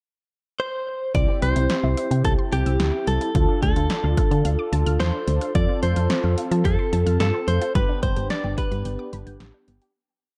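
Bright and upbeat, this short synth-pop piece moves at 109 BPM in a straight 4/4 in C major, with a dark, warm production and light reverb. A clean electric guitar, recorded direct, opens the pickup bar alone at 0.6 seconds with compressed, picked hook phrases in a motif-based melody. At 1.1 seconds the verse arrives and the rest of the band enters. A punchy analog drum machine plays a straight beat up front, and a round, sequenced FM bass with a fast attack sits equally forward. Mellow synth brass holds detuned sawtooth triad chords with chorus and vibrato. Underneath, in the background, a squelchy, resonant blip pluck runs a thirds arpeggio in sixteenths through phaser and tape echo, while the chords move from C to Dm, F and G before the fade-out that begins at 7.8 seconds.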